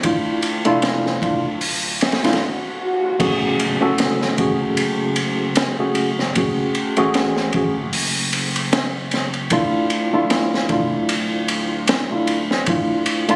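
A worn, slightly out-of-tune tine electric piano sits up front with tremolo and tape echo, over a crunchy, gritty breakbeat kit with a punchy kick, high-tuned snare and dark cymbals, and a round, deep analog bass in the background, setting a smoky, melancholic trip hop groove with a swung feel. A very quiet electronic swell rises from 2.2 seconds into a brief break, and an impact lands at 3.2 seconds as the harmony moves from D minor to F# minor colours. The sound has the character of a phone recording in a room with club reverb, vinyl crackle and compression, in this excerpt from a longer piece.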